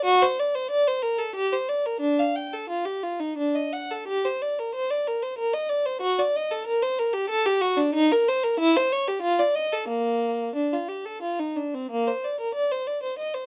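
A dark production with light reverb frames a single violin heard close and up front, its tone rich and smooth. This is a classical, baroque-style suite movement for unaccompanied violin, cut from a longer piece, moving in 3/4 at roughly 85-95 BPM with a rubato feel that gives it a flowing yet grave character. One bowed player carries the whole passage from 0.0 to 13.5 s, ranging from Bb3 up to G5 with vibrato and an even line. The music begins in G minor and turns to Bb major at 7.9 s. A new section arrives at 11.9 s, shortly before the passage breaks off, and the instrument is tuned to A4 = 438 Hz.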